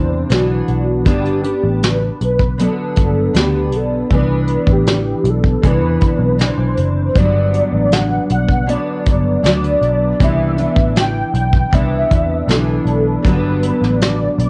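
A straight, unhurried 4/4 at 79 BPM sets a laid-back, sunny indie pop and bedroom pop mood in G major, drifting between Cmaj9 and Gmaj7 across this short section cut from a longer piece. A soft brush drum kit joins at 0.3 seconds and sits up front, with a fat snare, tight kick and hi-hat in a small, natural-sounding room, its sound coloured by cassette tape. Beneath it, a vintage muted picked electric bass supplies a dark, round, foam-muted low end through an amp. A fingerpicked steel-string dreadnought guitar, full-bodied and close, carries the accompaniment through analog chorus, plate reverb and a warbly pitch drift. On top, a velvety synth lead built from detuned sawtooth and triangle voices sings the melody with a fast attack, sustained notes and vibrato, treated with ensemble chorus, cassette tape, tape echo and plate reverb. The mix carries light reverb and the hazy, dulled top end of a home cassette recording.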